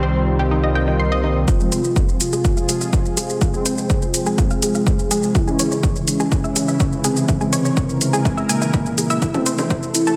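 Hypnotic and dramatic, this melodic techno excerpt in F minor moves at 124 BPM, opening on a soft octave-layered synth lead with phaser and vibrato, an evolving resonant pad under a filter sweep, a sawtooth analog pluck tracing arpeggios, bold, warbling analog synth brass stabs and a very quiet round, deep bass, with the lead, pluck and brass carrying cassette-tape colour and analog delay. At 1.5 seconds a punchy, up-front electronic kick and a layer of shaker, metallic hi-hats and congas arrive to start a build-up, while filter sweeps run across the pluck and brass, the chords move from Fm through Dbm to Am, and a drum fill lands at 9.2 seconds. A lush hall reverb soaks the mix in a dreamy haze, with sidechain pumping breathing through the lead, pad, pluck and brass.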